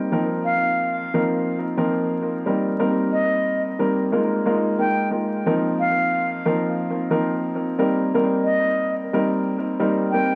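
A swung 4/4 groove at 90 BPM sets a reflective, gritty hip hop mood in this short excerpt cut from a longer piece. A dark concert grand piano carries the accompaniment from the start, mellow and up front with deep bass and a short, vintage sustain, moving through F7sus4, Cm7 and Bb7sus4 chords. At 0.4 seconds a silver concert flute enters with the melody between Eb5 and G5, its breathy, warm, straight tone tongued and close-miked for an expressive, up-front presence. Both instruments pass through filtering and analog delay, and the mix is echo-heavy, set in a moderate spring reverb with studio ambience and a layer of vinyl crackle. A second section begins at 5.5 seconds, returning to the F7sus4 and Cm7 harmony as the two parts continue to the end.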